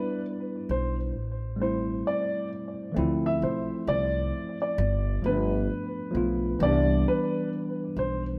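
An upright piano and a mellow tine electric piano open this short, nostalgic hip hop fragment together at 0.0 seconds. The piano carries a high, intimate melody with a boxy, woody tone, long sustain and audible action noise, softened by a low-pass filter and trailed by analog delay. Beneath it, the electric piano plays worn, slightly out-of-tune chords in C major, its clean and direct sound colored by cassette tape and a low-pass filter. A pizzicato upright bass joins at 0.7 seconds with a dark, growly steel-string tone, sitting up front with the keys. At a slow 66 BPM with a swung 16th-note feel, the dreamy progression moves from Cmaj9 through Am7, Dm9 and G9 before returning to Cmaj9. Light studio reverb surrounds this rough home demo mix, and the passage is cut from a longer piece.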